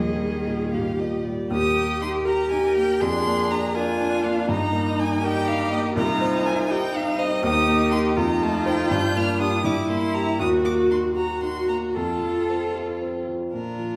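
This lively, cheerful classical-period movement for piano quartet moves at 74-82 BPM in dotted-quarter beats, a rubato 6/8 in E-flat major, in a short passage taken from a longer piece. A clear, focused violin carries the melody with vibrato, a rich, close cello sings a second line beneath it, and an intense, distant-sounding viola and an up-front grand piano fill in the accompaniment, with all four parts playing throughout the 14 seconds. The harmony moves from E-flat through C minor, F7 and G minor to a darker E-flat minor before settling on F, all heard from further back in a recital hall with a generous reverb.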